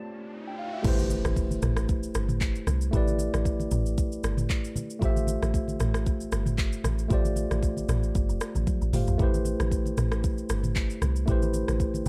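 A swung 115 BPM amapiano groove in A minor with a deep, late-night mood, this excerpt opens with a tine electric piano and a riser before the drop at 0.8 s brings in a round, dark FM log drum bass with a noisy percussive bite, an up-front afro-pop kit of deep kick, warm hats, handclaps, rim clicks, shaker, toms and crash, plus damped, low-tuned congas in the background, as the clean electric piano sounds through built-in speakers over Am7 and Fmaj7 chords, with a drum fill at 8.7 s and a closing piano fill.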